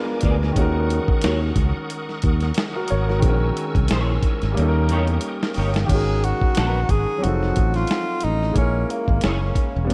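Soaked in a lush hall reverb with a faint mains hum underneath, this dreamy excerpt of smooth, soulful neo-soul R&B moves at 90 BPM in 4/4 with a gentle sixteenth-note swing. A dusty, sampler-style drum kit sits up front, compressed and gritty, with a thumpy kick, a medium-tuned snare, hi-hat and crash cymbal. A growly, bright fingered electric bass sits beside it. A warm concert grand piano with deep bass carries the accompaniment, and a clean, picked electric guitar with ensemble chorus adds a second line in the background. A reedy tonewheel organ, with key click and a fast rotary speaker, holds sustained chords through a harmony of rich altered sevenths and half-diminished colours. After a drum fill at 4.6 seconds, the organ drops out at 5.9 seconds and a breathy tenor saxophone takes the solo melody up front, jazz-style, with soft attacks, scooped notes, vibrato and a tape echo.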